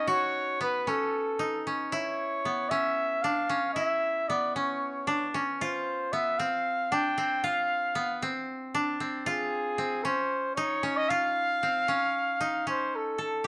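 Brooding and tense, this progressive instrumental fragment in 7/8 sets a mellow, classical-style trumpet melody with light vibrato and a distant, roomy tone over dry, woody koto arpeggios played with fingerpicks, both sounding for the full 13.5 seconds as the harmony moves from F#m through Bsus24, F5 and C# to a rootless Dm, all captured with close, detailed microphones and light reverb.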